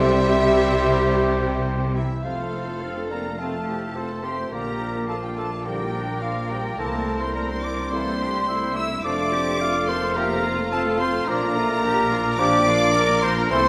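Classical orchestral music, a spirited and graceful fragment of a dramatic romantic movement in which a lush, bowed violin section carries the melody, joined by airy flutes, a present clarinet, a soft-edged cor anglais and a second, very quiet violin line, all playing throughout. Beneath them a punchy but distant bassoon and a rich, focused viola section accompany, while a tight, roomy French horn section and a very quiet trombone section hold sustained chords, a mellow trumpet adds stabs in the background, and a dark tuba, a smooth cello section and an expressive double bass section anchor the bass. The whole ensemble sits in a wet scoring-stage reverb, and after the opening 2.2 seconds the music moves into its longer second section.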